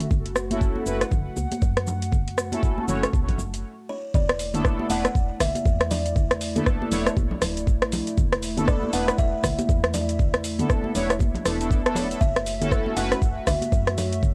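Hypnotic and earthy, this afro house excerpt rolls along at 119 BPM with a swung 16th-note feel, built on a knocking, up-front electronic kick, an afro-pop kit of metallic hats, cabasa, rim click and toms, and ringing, dry congas set in the background. A moody, wave-folded analog pad and a soft, round FM bass pump beneath mellow, detuned synth brass stabs colored by phaser and tape echo, moving from F#m7 to E7sus4 after a brief stop ends at 4.1 seconds. At 3.9 seconds a buzzing, hollow-boxed kalimba enters with a close-miked melody, the whole piece carrying the light reverb and grit of a home cassette recording.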